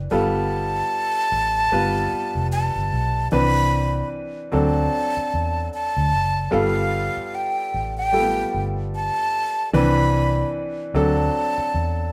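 Lush 1970s-style soul at a relaxed 75 BPM with a 16th-note swing, this romantic, smooth excerpt sets a breathy, straight-toned jazz flute melody high over a mellow grand piano with short sustain and a dark, round, foam-muted electric bass, all up front in a moderate stone room, as the harmony moves through G9, Cmaj9 and D7.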